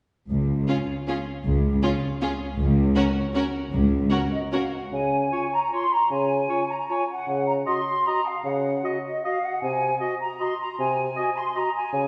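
In an uneven 3/4 with rubato at about 155 BPM, this elegant, sweeping classical passage in Db major, cut from a longer piece, opens at 0.3 s with lush cello and double bass sections sustaining a low Db2, joined at 0.7 s by focused violins, a smooth second violin line and close violas. From 4.3 s it passes to a crisp, pure flute ensemble up front, joined by a mellow bassoon at 4.9 s and by a close-miked clarinet and a roomy oboe at 5.3 s, all heard from further back on a reverberant scoring stage, with an Ab7/C chord arriving at 9.6 s.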